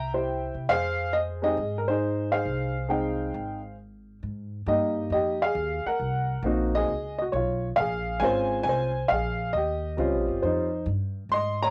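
A jazz piano trio excerpt in F minor swings at 136 BPM in 4/4, with a swinging, smoky mood and a slightly flat tuning of A4 = 438 Hz. An upright piano carries the melody throughout, ranging from G3 to C6 with a woody, natural tone that sits up front. Beneath it, a pizzicato upright bass with steel strings plays the bass line from start to finish, its acoustic sound close and present. The harmony opens on C before settling into Fm9, then at 4.2 seconds a new section begins on Fm11 and moves through Cm7b5, B69 and Bbm9 to end on Eb13. The pair sound as if captured in a modest booth with a short, moderate ambience, and the piece was recorded at home on cassette. The clip is cut from a longer piece.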